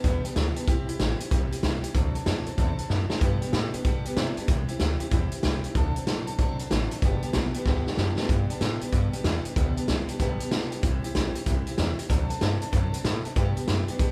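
An up-front vintage drum kit with a punchy kick and a rolled-off top, a woody, thumpy pizzicato upright bass on gut strings, and a bright, full-bodied picked jumbo acoustic guitar open this upbeat, rowdy rockabilly excerpt together at a swung 189 BPM in G major, cycling through G, C and D7 as a band playing live in one room with light reverb, the drums adding fills at 2.9 and 7.7 seconds.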